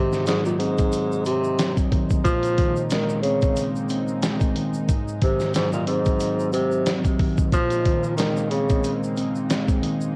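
A swung 91 BPM boom-bap hip-hop groove in Bb minor rides a gritty, compressed sampler-style kit with a thumpy kick and fat snare up front, while a breathy, subtoned tenor saxophone sings a moody, tough vibrato line over a mellow tine electric piano, a smooth detuned analog pad with chorus sits in the background alongside a grainy tube shaker, and the whole cut carries the sound of a home cassette recording with light reverb, tape echo on the sax, and lossy artefacts.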